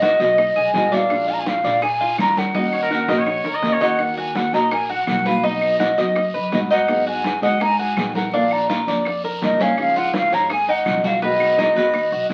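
Latin Cuban son and guajira in Eb minor at 166 BPM, this danceable excerpt from a longer piece sets an up-front, breathy, close-miked concert flute melody over a thumb-plucked nylon-string guitar, metallic double-stringed tres arpeggios, thumpy gut-string pizzicato upright bass, background congas and bongos, raspy guiro and woody claves, with a punchy, scooped trumpet line cutting in from 2.7 to 4.0 seconds during a drum fill, all soaked in studio reverb and the crackle of a very old 78 rpm record.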